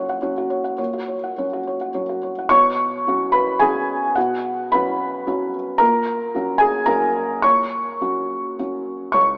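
A felt-muted upright piano plays alone, soft, mellow and intimate with audible action noise, sitting up front in a reflective, melancholic neoclassical minimalist piece in a rubato 3/4, its chords moving from F#/A# to Bsus2 at 2.5 seconds and back at 5.8 seconds, heard through a lush hall reverb and a rough home-demo mix with an AM radio sound in this short cut from a longer work.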